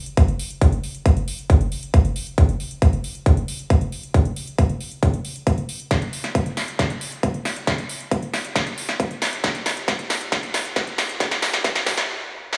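Metallic, high-passed hats and a punchy high-passed snare from a big-room dance kit open this euphoric yet bittersweet uplifting trance build-up at 136 BPM in straight 4/4, joined almost at once by a layered, punchy, up-front electronic kick, all under a filter sweep and light digital reverb, with a drum fill from 5.9 seconds before everything stops at 12.1 seconds.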